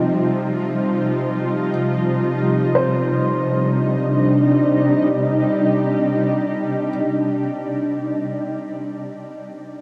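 A shimmering, detuned ambient pad up front, an overtone-sweeping drone resting on C3 in the background, and a felt-muted upright piano with audible action noise tracing a soft melody between C5 and Eb5 through delay all begin together in this reflective, spacious free-time ambient excerpt in C minor, moving from Ebadd9/C to Cmadd9 at 2.8 seconds, bathed in huge reverb and the warbling pitch drift of worn cassette tape, the pad sustaining until 7.3 seconds.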